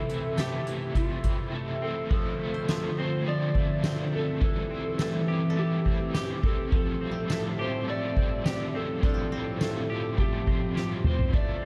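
Dream pop at 104 BPM in F major, this short excerpt feels floating and blissful, wrapped in a dark production with light reverb and a sense of studio ambience. A warbling, nostalgic tape-like pad holds sustained chords throughout, its detuned, lo-fi tone softened by chorus and its own reverb, moving from Fmaj7 through Dm7 and Am7 to Fadd9/A. An electric slide guitar carries the melody with a slightly broken-up, shadowy voice and digital delay, while a clean, hollow-body semi-hollow electric guitar picks bright arpeggios through analog chorus and delay. Beneath them a scooped, overdriven electric guitar adds accompaniment colored by tremolo and analog chorus, and a very quiet, woody koto, plucked with fingerpicks, adds dry texture. The soft-mallet drum kit sits up front with a boomy kick, fat snare and dark cymbals. A break falls between 1.5 and 2.1 seconds, and the drums play a fill at 10.8 seconds near the close.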